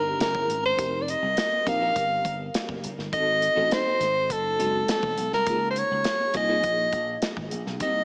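Heard through a small-speaker tone wrapped in a lush hall reverb, this bittersweet, nocturnal slice of polished 1980s jazz-funk pop moves at 102 BPM in straight 4/4, with a mellow soprano saxophone carrying the melody up front with light vibrato over a sparkling, bell-like FM electric piano treated with phaser and ensemble chorus, a bright, punchy slap bass, and a dark, tight studio drum kit of hi-hat, kick and snare with gated reverb that enters at 0.2 seconds, all moving through F#9, F9sus4, Ab7b9 and Db69 in a passage cut from a longer piece.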